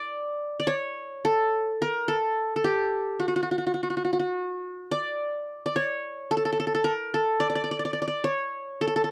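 A close, dry recording with the intimate presence of a 1970s studio carries a single qanun, touched only by light reverb. This brief fragment of Turkish music, cut from a longer piece, sits in makam hicaz and moves in a nine-beat metre with a straight feel. The qanun plays solo and up front for the full 9.1 seconds, its triple strings plucked with fingerpicks for a bright-edged attack over a warm acoustic body. Its line stays within a compact register, reaching from a microtonally lowered F# up to the D above. The mood is warm and passionate, the instrument's close, unadorned tone drawing the ear straight to every plucked note.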